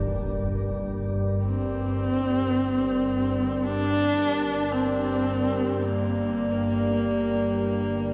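Ominous and desolate, this fragment of a dark ambient drone piece drifts in free time, cut from a longer work. A low, organ-like drone with a warbling, detuned vintage character sits beneath a deep, moody analog pad whose sawtooth body, sub octave and phaser give its sustained chords a shadowy depth. At 1.4 s a single horsehead fiddle enters up front, bowed on horsehair strings, with a husky, boxy tone, expressive vibrato and gliding portamento across a narrow melodic range. Shimmer reverb hangs on both the pad and the fiddle, while delay trails the fiddle's lines. The whole passage sits in a vast cathedral reverb with a long decay, and a cassette tape grain colours the sound through to the cut at 8.1 s.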